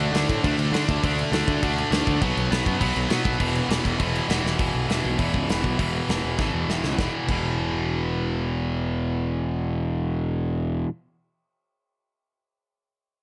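A bright, double-tracked distorted electric guitar sits up front with an overdriven picked riff over D5, B5 and E5 power chords, giving this short cut from a longer punk rock piece a rebellious, rowdy charge at a fast, straight 4/4 pulse. Beneath it, a growly fuzz bass with a punchy, direct-and-amped edge adds its own overdriven drive, while a big acoustic rock kit with a mid-forward, medium-tuned snare, rolled-off top and crash, hi-hat and kick adds fills at 4.4 seconds and from 6.4 seconds before dropping out at 7.4 seconds. The sound is dry, and the guitar and bass carry on alone through the final stretch.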